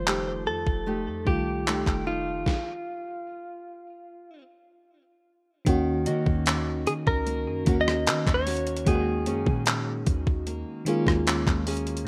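This contemporary R&B piece in Eb minor moves at a slow 75 BPM in a straight 4/4, with a longing, sensual mood, and is cut from a longer piece. Up front, a clean electric guitar, recorded direct and compressed, picks the melody through a digital delay until 9.6 s, over a lush, dreamy FM electric piano with a soft pad layer, chorus and tremolo, and a fingerpicked classical nylon-string guitar playing arpeggios. Underneath, a boomy sine-tone 808-style bass sits deep and dark, while a thumpy, overdriven 80s digital drum machine with gated reverb on its snare drives handclaps, hi-hat, kick, rim click and snare as the loudest part. The harmony opens on F9, then a stop runs from 2.5 s until the second section arrives at 5.7 s on Ebm7, later shifting to Gb69/Eb. A pure, gentle synth bell with chorus, phaser and delay glints briefly in the background around 6.1 s. The rough home-demo mix is dry, with very little reverb.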